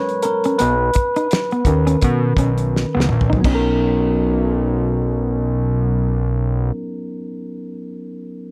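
Smooth and relaxed, this neo-soul R&B excerpt in B major moves at 84 BPM with a swung sixteenth-note feel, its chords shifting from G#m11 to Bmaj7. An up-front, clean tine electric piano through a combo amp and plate reverb takes a solo passage until 3.4 seconds, alongside a compressed, fingered electric guitar with spring and plate reverb. Beneath them sit a fat, detuned sawtooth-and-square analog bass with a filter sweep and a cloth-damped, thuddy drum kit with dark cymbals and a gritty, saturated edge, whose fill runs from 2.7 seconds.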